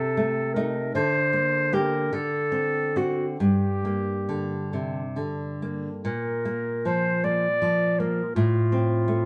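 A moderate reverb from a large studio surrounds this live, single-room recording, with the two players sounding close and present. It is a fragment of a romantic duo for clarinet and classical guitar, slow and rubato in 6/8, with an elegiac, melancholic mood. The clarinet carries the melody in a bright, smooth-topped classical voice, sitting up front in its middle register. The nylon-string guitar accompanies with fingerpicked classical playing, its acoustic tone crisp and close, with an audible finger squeak on the strings. Both parts play throughout, opening in a minor key over shadowed chords and turning to a major key at 6.1 s before the fragment breaks off at 9.3 s.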